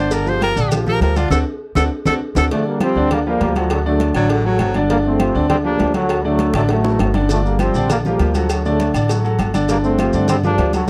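A breathy, whispered tenor saxophone solo opens this passionate, danceable salsa excerpt in G minor at 200 BPM over a clear, long-sustaining concert grand piano and a woody, thumpy pizzicato upright bass, with bright damped congas, tight high-tuned cowbell and bongos, and ringing agogo bells and timbales sitting in the background and grainy maracas adding texture, before a tight, smooth-topped trombone section takes the melody at 2.5 seconds, joined briefly at 4.2 seconds by a vibrato-laden baritone saxophone, all captured in a dry, close 1970s-style studio sound.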